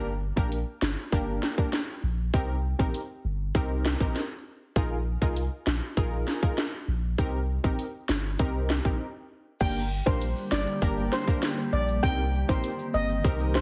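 A straight, bouncy dancehall groove in 4/4 drives this hypnotic cut from a longer piece, built on an electronic island pop drum kit with a tight kick, sharp snare, warm hi-hats and crash cymbal, re-recorded in a large room and placed up front. Beneath it, a punchy sine sub bass with a pitch-drop attack holds the low end, deep and mellow. Brassy, nasal synth brass stabs with a detuned sawtooth edge and a plucky filter decay carry the accompaniment, thickened by chorus, over a minor chord loop that moves between Gm, Cm7 and Bb7sus4. After a short break at 9.0 seconds, a shimmering steel pan lead enters at 9.6 seconds with tape echo, played with medium rubber sticks in an airy, metallic tone, joined by a bright, close acoustic tube shaker in the background. At 10.3 seconds a glassy, ethereal FM pad swells in slowly with ensemble chorus, its own reverb and sidechain pumping, all set in light digital ambience with a heavily compressed, radio-ready sound.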